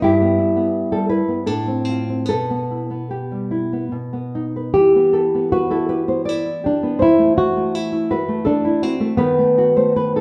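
A nylon-string guitar carries the melody up front, its classical tone warm and thumb-plucked, with a faint finger squeak audible as it moves between B3 and G4. Beneath it, a second nylon-string guitar plays the accompaniment across a broad span from G2 to D5, sounding dark, woody and full-bodied, with the deep classical character of old strings and the same thumb-plucked quality. This solemn, elegiac romantic duo sits in E minor and 3/4, drifting with rubato between roughly 72 and 85 BPM. The harmony moves from Em/G through F/A and Em/B to B, settles on Em at 4.7 seconds, then darkens through F#m7b5/E before ending on B7/D# at 9.2 seconds. The two players sound live together in one room, surrounded by a wet large-studio reverb. This 10.2-second passage is cut from a longer piece.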